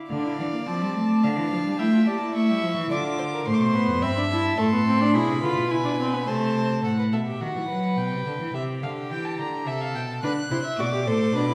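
Stately and joyful, this baroque-style fugue for string quartet in triple time sets a dark, distant gut-string violin melody above a reedy second violin line with an airy bow, a warm, nasal viola accompaniment that drops out at 6.8 seconds and returns at 10.2, and a rich, up-front cello bass, each a single period-style player bowing in a reverberant recital hall heard from further back, cut from a longer piece.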